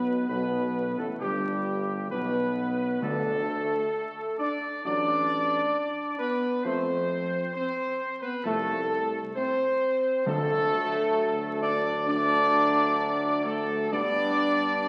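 A trumpet section leads up front with a smooth-topped, lightly vibrant melody in the range of G4 to D5, carrying a triumphant yet solemn character through this slow classical brass passage cut from a longer piece. Beneath it, a mellow French horn section holds tight sustained chords, while a warm, present trombone section sits further back in the blend, and a solo tuba supplies a mellow bass line reaching down to G1. Timpani played with medium mallets on calf heads add close, dry strokes on D3, entering at 3.0 seconds and again at 10.3 seconds. The harmony moves from G to D, through F, back to D and home to G, giving the passage a stately, ceremonial arc. A wet scoring-stage reverb surrounds the ensemble, and the sound carries the crackle and patina of a very old 78 rpm record.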